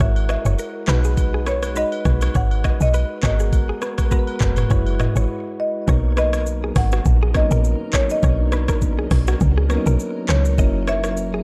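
Lightly swung sixteenths drive this joyful, sunny afrobeats groove, carried by an up-front electronic afro-pop drum kit with a knocking kick, metallic hats, handclaps, rim clicks, shaker and toms, alongside a punchy, woody log drum bass, while agogo bells and woodblock add accents from 0.2 to 5.0 s. Above them, a smooth marimba with medium mallets carries the melody through digital delay, soft, round electric-piano-like synth keys shimmer with chorus and tremolo, and a clean, compressed, direct-recorded electric guitar picks a riff bathed in spring reverb and delay. After a short break, a cloudy, evolving granular pad enters in the background at 6.7 s with sustained chords, rounding out a dark, warm production cut from a longer piece.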